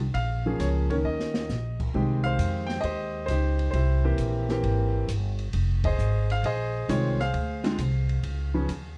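A dark, warm, dry production frames this short, relaxed jazz piano trio fragment, cut from a longer piece and swinging easily in four. A woody, thumpy pizzicato upright bass and a natural, deep-bodied concert grand piano sit up front, the piano carrying the melody. A smooth, rolled-off drum kit with a boomy kick plays a fill at 1.0 seconds before the band hits an accent at 5.8 seconds over a jazzy progression.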